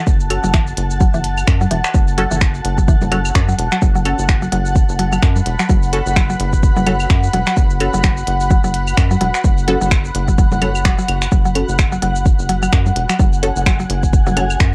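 Minimal techno at 128 BPM in F# minor, clinical and quirky, this section of a longer piece rides a swung 16th feel over a single F#m chord, driven by a punchy, layered electronic kick up front and a rubbery, hollow square bass that pumps with sidechain. A minimal click drum kit of finger snaps, clicky hats and shaker sounds overdriven and re-recorded in a small room, while overdriven claves and congas with analog delay sit in the background; a woody, round, mallet-like synth pluck carries the riff through chorus and tape echo, and a muted, detuned dub chord stab flickers through phaser and analog delay. Above it all hovers a cloudy, evolving granular pad with built-in reverb, a very quiet electronic swell appears at 10.7 seconds, and the whole mix carries a cassette home-recording character in a digital ambience.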